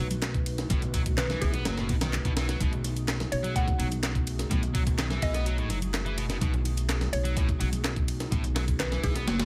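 A dark, detuned analog pad pumps quietly in the background under a sludgy, overdriven and double-tracked electric guitar riff with 12-bit sampler grit and digital delay, while a woody pizzicato upright bass sits up front on a B7 chord in B mixolydian. This energetic, playful breakbeat fragment at 126 BPM rides a gritty, pitched-up, compressed sampler-style kit with a thumpy kick. Layered electronic garage claps, hi-hat and ride and very quiet live-room congas and bongos support it, and a round, mellow FM mallet pluck with telephone filtering and chorus enters at 1.2 seconds before the kick drops out at 9.3 seconds.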